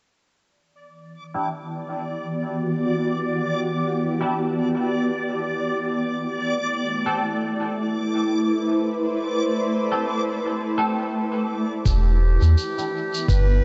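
A dreamy, reverb-soaked haze opens this spacious, deep ambient dub excerpt in E minor at 84 BPM with a 16th-note swing, where a cloudy, evolving granular pad holds Em7 and Am7 chords beside a reversed, detuned backwards swelling texture and filtered, twangy clean electric guitar stabs with dub echo, until at 11.9 s a mellow solo clarinet melody, an up-front round sine sub bass, a muffled pitched-down cabasa and a thumpy, tape-warm electronic kick in the background arrive on E minor.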